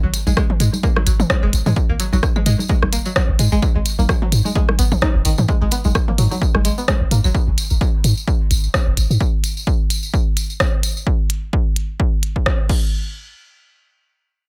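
A swung 4/4 groove of overdriven electronic kick, clicky minimal drum kit with hi-hat, rim click and crash, a close, jingly tambourine, and layered garage percussion of claves, congas and toms drives this cool, quirky minimal techno cut from a longer piece, heard in a dry room. A deep, punchy sine sub bass pumps against the kick, while a twangy, string-like resonator pluck plays a riff through chorus, sidechain pumping and dub echo, with a filter sweep and moving notch over its sawtooth and noise layers. The pluck and garage percussion stop at 7.3 seconds, the bass at 9.2 seconds and the tambourine at 11.0 seconds, leaving the kick and click kit to carry on until 12.8 seconds.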